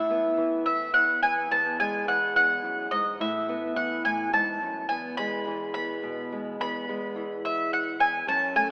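Folk music in a lilting 6/8 at 71 beats per minute, this short cut from a longer piece feels nostalgic and hopeful, settled in E major and tuned slightly below standard pitch. A bright, up-front bowl-back mandolin carries the melody in its upper register, its doubled strings ringing with a tape echo trailing each picked note. Underneath, a warm fingerpicked steel-string acoustic guitar supplies the accompaniment, sitting lower in the mix and spanning a deep range from its bass strings upward. The harmony rocks gently between Asus2 and E, giving the phrase an open glow across its 8.7 seconds. A lush hall reverb with a long tail surrounds the instruments, while the rough home-demo mix and boxy AM-radio coloring lend the sound a faded, keepsake quality.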